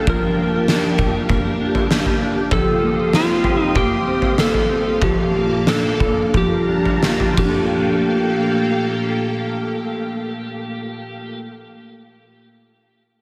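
An oversized, low-tuned drum kit sits up front in this hazy, ethereal dream pop fragment in G minor, its saturated, gritty sound carrying a punchy kick, fat snare, toms and dark crash cymbals in a pumping stone room before it drops out at 7.5 seconds. Around it, a clean, fingered electric guitar plays arpeggios with ensemble chorus and delay, while a string machine with cellos holds full-bodied sawtooth chords with a sub octave, slow attack and its own chorus over a Gm9, Eb69 and Bbmaj7 progression. A compressed, slightly broken-up slide guitar carries the melody through delay as the straight 4/4 tempo eases from about 98 toward 83 BPM, all within light reverb and small room ambience in a clip cut from a longer piece.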